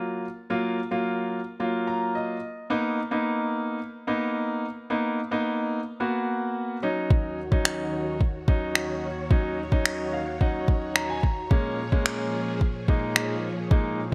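A straight 4/4 pulse at 109 BPM drives this upbeat, carefree dance-pop excerpt, where a clear, intimate grand piano with audible action noise, deep bass and long sustain pumps through a seventh-chord progression with brief fills, joined at 7.1 seconds by mellow, chorused vintage string-machine violas with a sawtooth edge and a soft-kicked, tape-tinged electronic R&B kit of finger snaps, before a faint riser appears at 14.1 seconds, the whole mix sitting in a moderate plate reverb with a bright 1980s-style digital sheen.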